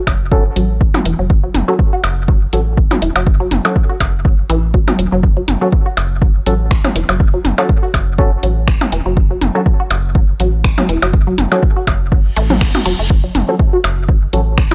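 Minimal techno at 122 BPM in F# minor, cool and clinical, with a swung 16th feel over a single F# minor chord in this cut from a longer piece. A punchy, up-front electronic kick and an analog drum machine with finger snaps and hi-hat drive it alongside delayed percussion blips and toms, while a rubbery, nasal square bass pumps against a squelchy, resonant blip riff carrying phaser and analog delay. A hollow, percussive organ stab with subtle chorus and delay enters at 0.3 seconds, and a reverse cymbal and zap appear at 12.3 seconds, all within a dry, gritty hardware sound with cassette tape character.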